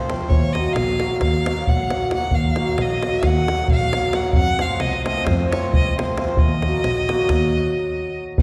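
A rich, smoothly bowed violin sings with vibrato over shimmering hammered cimbalom and a tight, close davul, joined at 0.3 seconds by a dark, woody bowed double bass, in this fiery, restless Balkan wedding-band excerpt in 9/8 at 266 BPM, moving through Ebm, F and back to Ebm in Eb dorian sharp4, with a stop from 7.4 seconds and a wet, church-like hall reverb lending spacious depth.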